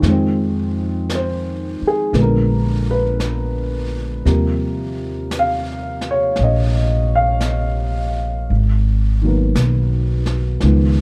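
This is a slow jazz ballad at 57 BPM in 4/4 with a swung eighth-note feel, a smoky, wistful piece cut from a longer performance. A dark upright piano carries the accompaniment throughout, its mellow, worn tone slightly detuned, with audible action noise and long sustain that make it sound intimate and vintage. Beneath it, a woody, growly pizzicato upright bass with steel strings sits up front in its low register. A jazz drum kit played with brushes stays far back in the balance, touching the snare and hi-hat in a studio room. The harmony moves from Fm7 through Bb7b9 to Eb69, then settles on Abm9 at 8.5 seconds. The production is dark and warm, with little reverb.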